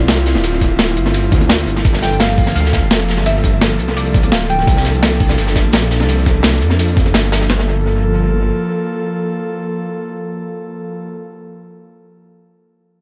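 A rumbling, detuned saw bass sits up front in this lush, dreamy liquid drum and bass excerpt, its deep, beating low end carrying the opening drop. Overhead, an airy, breathy pad holds sustained chords with chorus, moving from Dm9 to Gm9 and C13sus4 before settling back on Gm9. A soft, round pluck carries the melody in the background, its decaying filter tone softened by subtle chorus and dub echo. The drums stack three breakbeat kits: two gritty, sampler-style kits with overdrive supply a thumpy kick, hi-hat, ride and a medium-tuned snare, while a saturated acoustic kit with a rolled-off top sits behind them, its hats, snare and room high-passed and sent into dub echo. The bass drops out at 8.5 seconds and the pad rings on alone until 11.1 seconds, closing a mix that is light on reverb but heavy with echo.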